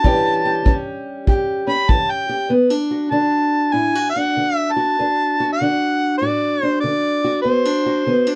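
A dark, booth-bound sound with moderate, short ambience frames this gritty, rollicking acoustic country blues excerpt in D major, swinging at 97 BPM in 4/4. Up front, an amplified, overdriven harmonica carries the melody with light vibrato and tongue slaps, playing a jazz-style solo over A7 until 2.5 seconds, when the harmony moves to D. A boxy, parlour-style fingerpicked steel-string acoustic guitar accompanies throughout, and a tight, roomy kick drum played with brushes sounds only until 2.1 seconds.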